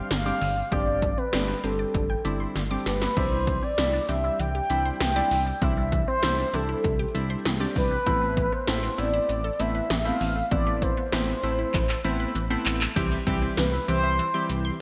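A mellow, horn-like synth lead with chorus, phaser and delay sings a wistful yet upbeat synth-pop melody over round, detuned analog keys and a squelchy, resonant blip pluck tracing arpeggios in the background, as a smooth sawtooth bass and 1980s-style electronic drums with a punchy kick, a gated snare and metallic hats arrive at 0.1 s, with drum fills at 2.6 and 11.7 seconds, all set in a lush hall reverb within a bright digital production that is cut from a longer piece.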